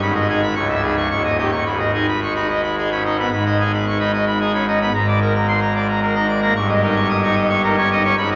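In a straight 3/4 at 111 BPM, this brief cut from a dramatic, majestic organ toccata in G# minor, tuned to A4 = 438 Hz, features a solo pipe organ on full organ with brilliant mixtures and a romantic voicing, sitting up front and spanning from deep pedal notes to high treble, while a long, wet cathedral reverb of 5.5 seconds blooms around harmonies that move from G#m through C#m and D#7 before reaching A#7/G# at 4.9 seconds.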